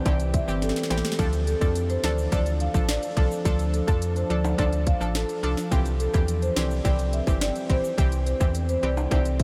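A dark, detuned pad opens this sultry, tough dancehall excerpt, its sustained chords sitting deep in the background with chorus, built-in reverb and a sidechain pumping. Almost at once the rest of the band joins: a close-miked marimba with medium mallets carries the melody, its full, warm tone trailed by a diffuse ambient delay, while an analog pluck with a round, warbling sawtooth and chorus supplies the accompaniment. Underneath, a sine-and-triangle sub bass with an octave gives a deep, sustained floor, and the up-front electronic drum kit pairs a tight kick and sharp snare with smooth, tape-tinged hi-hats, adding a drum fill from 0.6 to 1.2 seconds. Acoustic timbales and egg shaker add a band-limited, vintage texture far back in the mix. The harmony moves from C to D minor and back to C, and the whole is soaked in a huge ambient reverb that gives it a dreamy haze.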